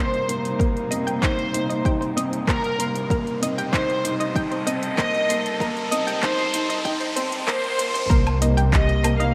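Cinematic and intimate, this short piano and strings electronica cut moves at 96 BPM in a straight 4/4, centered on C dorian over a Cm7 chord. A bowed violin section carries the melody with a pure, floating sul tasto tone and tape echo, while a muted string quartet, veiled and distant with con sordino vibrato and portamento, holds sustained chords under a low-pass filter sweep and sidechain pumping. A felt-muted upright piano plays a mellow riff with audible action noise and short sustain, and a round, bright analog pluck spins arpeggios through chorus, cassette tape coloring and tape echo. A deep house drum kit with metallic hats, handclaps and woodblock is overdriven and re-recorded in a large room, joined at 0.6 seconds by an up-front, deep electronic kick. An electronic riser builds from 0.8 seconds until the drop at 8.1 seconds, where a smooth, bowed double bass section enters on a low C2, all set in a moderate concert hall reverb.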